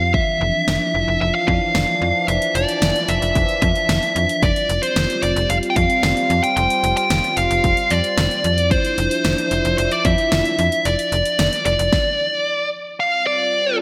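This melancholic, nocturnal synth-pop passage in D minor at 112 BPM opens with a dark, smooth overdriven lead guitar carrying the melody through delay, over a sweeping, resonant pad of detuned sawtooth chords treated with chorus and phaser and a snappy, metallic FM slap bass. A punchy, layered electronic pop kit with a fat snare and gated reverb drives the straight 4/4 groove as the harmony moves between Dmadd9/F and Fsus2. The bass drops out at 11.9 seconds and the drums at 12.1 seconds, leaving the guitar and pad hanging in the lush hall reverb of the bright 1980s-style digital production until the cut at 13.8 seconds.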